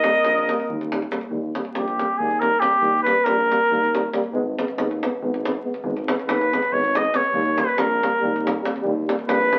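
Driven by a straight 7/8 pulse at 278 BPM counted in eighths, this fiery, restless Balkan brass band piece is cut from a longer tune. A tight davul keeps the odd-metre beat going throughout, under a clear tuba bass with a light vibrato and a vintage tone. The flugelhorn carries the melody up front, its light vibrato and classical phrasing taking over as a solo from 1.3 seconds. An alto saxophone adds a soft, close-miked second line that drops out at 0.9 seconds. A mellow euphonium and a distant trombone set deeper in the background fill the accompaniment as the harmony moves from Eb to Abm and back to Eb. A wet club reverb surrounds the band, and the whole sound is coloured like a very old 78 rpm record, with vinyl crackle running underneath.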